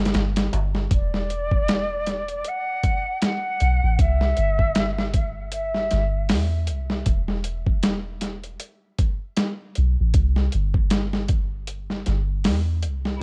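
Worn, warbling cassette-tape sound and studio reverb color this smoky, melancholic trip hop excerpt at 78 BPM in E minor, where a deep, round 808-style bass and a gritty, overdriven sampler-style drum kit with a thumpy kick swing beneath alternating E5 and C chords, a crisp metal-shell darbuka sits in the background only until 0.9 seconds, and an airy concert flute with vibrato and tape echo carries the melody from 0.9 to 6.3 seconds.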